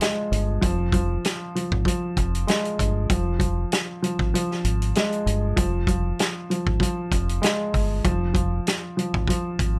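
Moody and gritty, this boom-bap hip-hop excerpt sits at 97 BPM in F minor with a light 16th-note swing, holding on a single F minor chord. A dark, worn grand piano with audible action noise and a cassette-tape character sits up front in its low register, alongside a tight, mid-forward soul drum kit of hi-hat, medium-tuned snare and kick with a rolled-off top, while a round, deep fingered electric bass enters at 0.3 seconds. The kick drops out between 4.3 and 5.6 seconds, and a light reverb gives the whole an intimate, close-booth feel.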